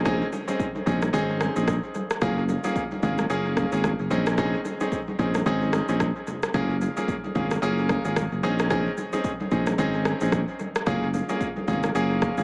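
A bright, up-front baby grand piano with audible action noise and tape echo alternates Bbm11 and Gbmaj9 chords over a growly, punchy fingered electric bass in this sultry, smooth afrobeats excerpt with a swung sixteenth feel, supported by an electronic drum kit with a deep kick, rim click and shaker under its own tape echo, and very quiet, distant congas ringing from a large room, all set in an echo-heavy, small-speaker mix with light reverb.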